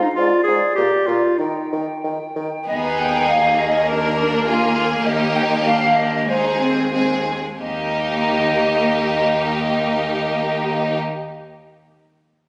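A quick classical-period movement for symphony orchestra, this cheerful, lively fragment of a longer piece moves in 2/4 with a rubato feel. It opens with winds: a hollow, airy small flute group with crisp attacks carries a second line throughout, sounding alongside a punchy, up-front clarinet heard only briefly and a bassoon accompaniment with light vibrato. At 2.7 s the strings enter. An intense, clear violin section takes the melody over a smooth second violin line, focused violas and a distant cello section on the bass. The pace slows between 4.5 and 7.6 s before the music settles on the tonic chord. A wet scoring-stage reverb surrounds the orchestra, and the phone recording adds studio ambience and compression.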